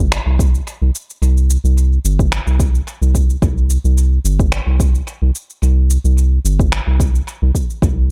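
A round, nasal analog bass sits up front from the start, pumping with sidechain compression between G1 and C2, while tape-warmed electronic shaker and finger snaps repeat in tape echo behind it. At 0.4 seconds a deep, tape-warm electronic kick drum enters up front, setting a hypnotic, mystical organic downtempo groove at 109 BPM in 4/4 with a light swing on the sixteenths. The short passage, cut from a longer piece, has a dry, echo-heavy mix in which the drums carry the air of a large room.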